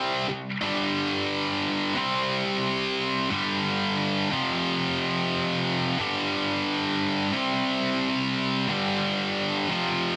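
A straight 4/4 pulse at 89 BPM drives this heavy, aggressive rock excerpt, where a lone tight, bright, picked electric guitar, distorted and double-tracked up front, churns through C5, G5 and F5 power chords across its 10.2 seconds, with light reverb and a heavily compressed, radio-like sound.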